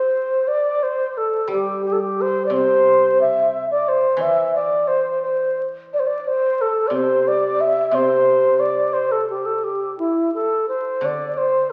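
A reedy, airy low xiao with vibrato and a crisp attack carries the festive, graceful melody up front in this excerpt of Chinese traditional chamber music at 88 BPM in a free rubato 2/4, joined at 1.5 seconds by a softer, silvery, ringing guzheng plucked with fingerpicks in the low accompaniment, all bathed in a wet scoring-stage reverb and the crackle of a very old 78 rpm record.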